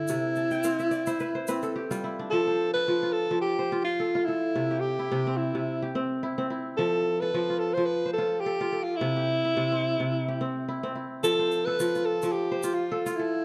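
A breathy alto saxophone and a ringing, fingerpicked kora open this joyful fragment of West African traditional music at 108 BPM in F lydian, with the saxophone's whispered, jazz-style solo melody and vibrato up front over the kora's crisp arpeggios and an early kora fill. A grainy, bright tube shaker adds close, dry percussion at the start and returns at 11.2 seconds, while the harmony alternates between C and F with a light swing. The dark, warm production places saxophone and kora in moderate recital hall reverb.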